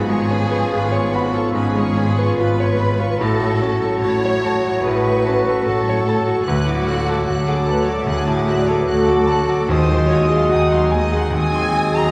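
Rubato at 73 BPM in 4/4, this brooding, passionate classical passage in F# minor pairs a clear, up-front grand piano melody of short sustain with a rich, vibrato-laden violin section singing high above, while an expressive second violin section, an airy flute ensemble, a distant clarinet and a close-miked oboe carry second lines, a warm bassoon and a very quiet, lush viola section accompany, a mellow French horn section holds chords, and cello and double bass sections ground the bass, the whole ensemble heard from further back through a wet scoring-stage reverb.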